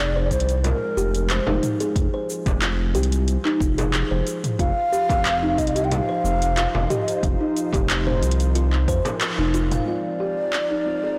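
A breathy low ney carries the melody over a detuned analog pad, woody kalimba arpeggios and a smooth up-front synth bass in this meditative organic downtempo cut at 91 BPM in F dorian. From 0.3 s an overdriven deep house kit with metallic hats, cabasa, handclaps and toms joins alongside a deep electronic kick, followed at 0.6 s by a small, bright frame drum. A band accent at 9.2 s then gives way to a dark, phased chord stab, a filter sweep on the kalimba and a glassy texture of drifting overtones, all in a moderate concert hall reverb on a blown-out, overdriven recording.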